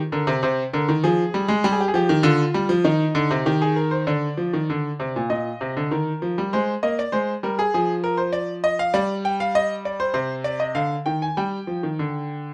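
Close, detailed microphones and a light reverb give this recording an intimate, up-front clarity. It is a serious, driving classical piece in baroque style, a two-part invention in C minor moving at a steady 99 BPM in 4/4 with a straight feel. A bright concert grand piano plays solo from 0.1 s to 12.5 s, ranging from Bb2 to Ab5, its brilliant upper register set against a deep bass. The opening phrase settles on C minor by 2.9 s. The second section begins at 4.1 s and passes through Eb over Bb, Ab and a diminished chord before returning to C minor and closing on a bare G chord. Cut from a longer work, the passage feels present and purposeful throughout.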